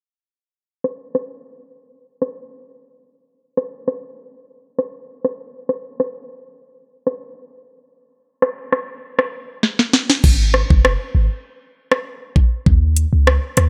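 A straight dancehall groove from an electronic afro-pop drum kit sets a tough, sultry mood: a knocking kick, sharp snare, rim clicks, metallic hi-hats and crashes sit up front under a filter sweep, with a drum fill leading into the next section. At 10.2 seconds a deep, boomy 808-style bass joins, clean and sine-like with a fast attack and dark decay. The dry, low-pass-filtered mix cuts off partway through, as it is taken from a longer piece.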